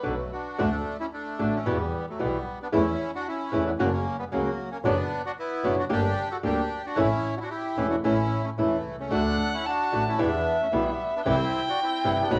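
Passionate and playful, this tango moves in 4/4 with a loose, rubato feel, and it is cut from a longer piece. A reedy, bright bandoneon carries the melody up front, while a dark, fingerpicked flamenco guitar plays the accompaniment close by. A bowed double bass, earthy and distant with light vibrato, holds the low end. A violin, played by one player up front, appears only in a brief touch at the start and then returns at 9.1 seconds with a smooth, expressive second line full of vibrato and portamento. The bandoneon, violin and guitar sit in plate reverb, and the violin and guitar carry a cassette tape colour. All of this unfolds in a small-room home recording, with the harmony moving through chords such as Bm, Emadd9, F# and Gm before ending on C.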